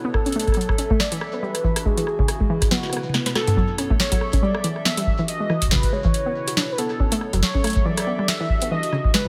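Glitchy and melancholic, this IDM excerpt with a lightly swung 16th-note feel sets a warbly, nostalgic tape-like pad with chorus, phaser and built-in reverb under dusty, detuned pluck arpeggios and a velvety, full-bodied synth lead melody with vibrato, while a booming analog drum machine with crisp snare, metallic hats, rim clicks and toms sits up front beside a deep electronic kick that drops out for a drum fill from 2.7 to 3.6 seconds over a looping cycle of minor ninth chords.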